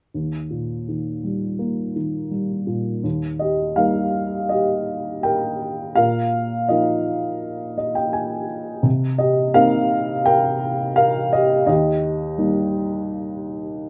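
A mellow, woody upright piano opens this brief, unhurried excerpt of lyrical solo classical piano in Eb major, played with a relaxed rubato around 83 BPM in 4/4 and carrying a sunny, easygoing mood. Its slightly detuned, vintage tone sits up front and intimate in a small room, with the soft clatter of the action audible, as the harmony drifts from Eb through Bbsus4 and Cm7 back home to Eb. A short piano fill from 7.4 to 8.9 seconds leads into the Cm7 chord.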